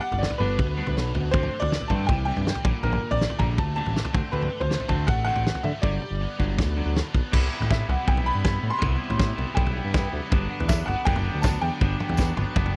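Indie rock at 160 BPM, upbeat and wistful, in which a brilliant, woody upright piano with audible action noise and slapback echo carries the melody over a fuzzy, chorused guitar riff, a clean, twangy electric guitar bathed in spring reverb, a smooth sawtooth-and-square synth bass with a ring-modulated edge, and an up-front, gritty drum kit with a fat snare and punchy kick that fills around 5.8 seconds, while a jingly tambourine slips in at 10.7 seconds, all in a dry, close 1970s-style small-room sound.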